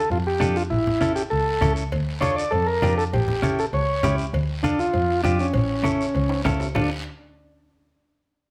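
A straight 4/4 cumbia pulse at 198 BPM drives this fiery, passionate Latin excerpt in D harmonic minor, where a reedy vintage combo organ with light vibrato and plate reverb carries the melody up front, a bowed, boxy double bass holds the low end, low-tuned congas sit in the background alongside a raspy guiro, a dark, scooped, picked electric guitar accompanies from 0.4 seconds, ringing cowbell and timbales join at 1.9 seconds, and a drum fill at 6.3 seconds closes the Dm, A and A7 changes before the harmony returns to D minor.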